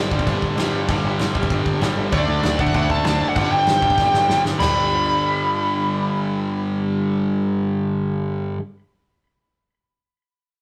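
Punk rock with an upbeat, rowdy energy, cut from a longer piece and driven by a straight 4/4 pulse. Three electric guitars stack bright, picked riffs from the start: a distorted guitar with overdrive, a double-tracked, compressed overdriven guitar sitting in the background, and a very quiet hollow-body semi-hollow guitar. Underneath, a growling picked electric bass, punchy and overdriven, holds the low end, while a loose indie drum kit with a tight kick and medium-tuned snare sounds distant and roomy, hitting crash cymbal and toms before a fill at 4.0 seconds and dropping out at 4.7 seconds. Up front, a dark, bluesy lead guitar enters at 2.1 seconds, its distorted tone trailed by digital delay. The whole track has the rough feel of a rehearsal-room take, with tube saturation and moderate studio reverb giving the sound some grit and space.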